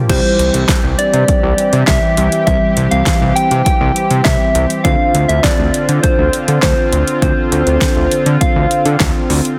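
Synth-pop with a nocturnal, melancholic mood, this short excerpt cut from a longer piece moves in a straight 4/4 over a shift from C to Dm7 at 4.8 seconds. A deep house drum kit sits up front with a punchy kick, fat snare, metallic hi-hats, handclaps and crash cymbal, its layered electronic sound roughened by overdrive. Beneath it, a thick analog bass with a saturated, detuned sawtooth tone and a filter pluck holds the low end prominently. A lush unison pad sustains chorused chords with a slow attack, while muted, felt-like synth keys add dark, intimate decaying tones in the background. On top, a bright, round, gentle FM lead with a keys-like strike carries the melody, colored by chorus and digital delay. Light reverb and digital ambience frame a dense, heavily limited modern master.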